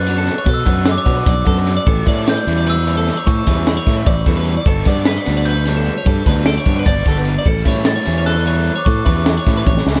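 This ten-second cut of math rock and midwest emo opens with a ringing, bell-like glockenspiel struck with brass mallets, its high melody trailed by digital delay, alongside a twangy, compressed twelve-string electric guitar picking clean arpeggios. A fraction of a second later, a double-tracked, biting overdriven guitar riff arrives with a crisp fusion drum kit, whose high-tuned snare and punchy kick sit up front in a small, pumping room. Beneath them, a fingered electric bass growls with fuzz and overdrive, punchy and prominent in the mix. Moving in 7/8 at 300 BPM counted in eighths with a straight feel, the music has a wistful yet playful mood, cycling through Bm9, A9sus4, Gadd9 and A13. The production is dark and warm, with little reverb, and a drum fill at 9.7 seconds closes the passage.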